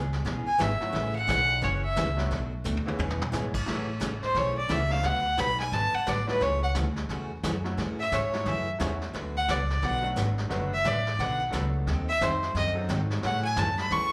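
A live club recording with light reverb carries this playful, cheerful western swing excerpt in A major at 176 BPM, where a woody, thumpy pizzicato upright bass, a vintage brush kit with dark cymbals and a drum fill at 2.6 seconds, a bright picked jumbo acoustic guitar and a brilliant upright piano with audible action noise, both with slapback echo, back a clear, lightly vibratoed fiddle that plays a brief intense line from 0.5 seconds before taking the earthy melody at 4.2 seconds over chords like A6, D6 and D#dim7.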